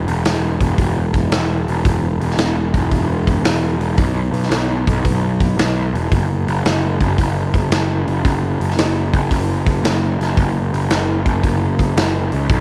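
Blues rock power trio and southern rock with a driving, swaggering feel at 113 BPM in 4/4, swung on the eighths, in this short excerpt cut from a longer piece. A growly, fuzzy picked electric bass sits up front and bright, with overdrive, staying low between E1 and C#2, while a big acoustic rock kit enters at 0.1 seconds with hi-hat, a punchy kick and a medium-tuned snare carrying natural big-room character. The mix is dry, with little or barely any reverb.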